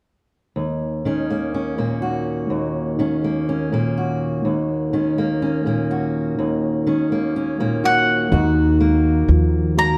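Acoustic folk for a duo or small band, this brief fragment of a longer piece moves in a slow, straight 4/4 with a wistful, haunting mood. A bright, fingerpicked steel-string acoustic guitar with fresh strings carries the accompaniment alone from 0.6 seconds, resting on a minor seventh chord. A bowl-back mandolin, picked and up front with its doubled strings ringing, enters with a high melody at 7.9 seconds. At 8.3 seconds the harmony settles onto a plain minor chord as a felt-muted upright piano adds soft, boxy arpeggios with audible action noise, and a pizzicato upright bass thumps in with a woody, low tone. A recital-hall reverb gives the dark production a roomy, lingering tail.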